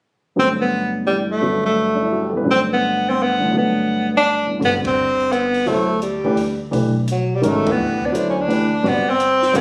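Modal jazz in a searching, hypnotic 3/4 swing at 170 BPM in G major, this brief excerpt from a longer piece opens on a Gmaj9 with a clear, up-front tenor saxophone carrying the melody in its low register with light vibrato and scooped notes over polished baby grand piano accompaniment, then upright bass with woody pizzicato and a compact cocktail drum kit with dark cymbals, a high-tuned snare and a punchy kick join at 4.6 seconds, the band hitting accents at 4.8 and 7.6 seconds in a moderate studio ambience captured on a phone in the room.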